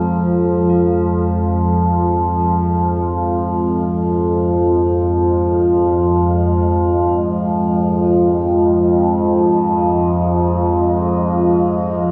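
A vast, echoing space soaks this dark ambient drone in a long cathedral reverb, giving its 12.1 seconds, cut from a longer piece, a cavernous and ominous weight. Up front, an overtone-sweeping drone built from sawtooth and sine tones holds low between F2 and F3, its resonant, moving overtones colored by chorus and phaser. Above it, a deep, moody pad of detuned unison sawtooth with a sub octave sustains an F minor seventh chord in free time, swelling in slowly and releasing long through chorus and shimmer reverb. Far in the background, tubular bells struck with a rawhide hammer fade in across the whole passage, their solemn, metallic ring on Bb4 arpeggiated through delay and shimmer reverb.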